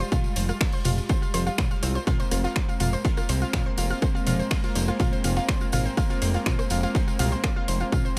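An overdriven electronic kick drum sits up front and drives this short, melancholic and dark piece of melodic techno at 123 BPM in a straight 4/4, entering at 0.1 s together with a layered techno drum kit of finger snaps, hi-hat, rim click and toms carrying its own overdrive. Beneath it, a fat, thick analog bass built from detuned sawtooth tones runs through tube saturation and a filter sweep, sitting low between F1 and C2 with a fast attack and a sustained body. A round, warbling vintage pluck spins bright arpeggios from C4 up to F6, coloured by chorus and tape echo, while a distant, floating string section holds soft-attack sul tasto chords, and the strings, pluck and bass all pump with sidechain. Far back in the mix, a very quiet acoustic kit adds hi-hat, ride and a gritty, saturated fat snare with a rolled-off top, and a close, dry, jingly tambourine sits in the background. The harmony moves from Fmadd9 to Abadd9/F at 2.1 s inside a small room ambience, and the excerpt is cut from a longer piece.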